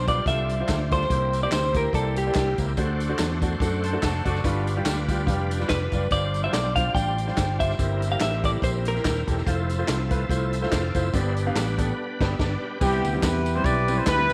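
A clean, twangy electric guitar melody with lush chorus and slapback echo opens this soulful, hopeful uptempo gospel excerpt at 144 BPM in C major, riding over clear, intimate baby grand piano with audible action noise, a bright, shouting tonewheel organ through a slow rotary speaker, punchy fingered electric bass, a swinging big-band drum kit, and tambourine with group handclaps and egg shaker, with a brief second guitar line at 3.8 seconds, a band accent at 12.0 seconds, and a smooth-topped horn section taking the melody from 12.8 seconds in an echo-chamber reverb.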